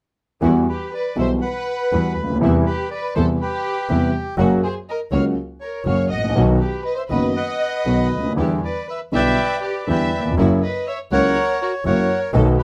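Tense and passionate, this short tango cut from a longer piece moves at 121 BPM in 4/4 with a rubato feel, centered in E minor. A reedy, bright bandoneon carries the melody up front from 0.7 seconds, while a lush violin section with smooth vibrato sings a second line beneath it. A concert grand piano, also up front, supplies accompaniment with deep bass and long sustain, and a single bowed double bass adds a clear, intense low line with light vibrato. A symphonic string section plays very quiet, biting stabs that sit close in the background. The harmony moves from Emadd9 through Cmaj7/E, F#, B and Em7 to F#7, heard in a rough home demo mix with moderate studio reverb.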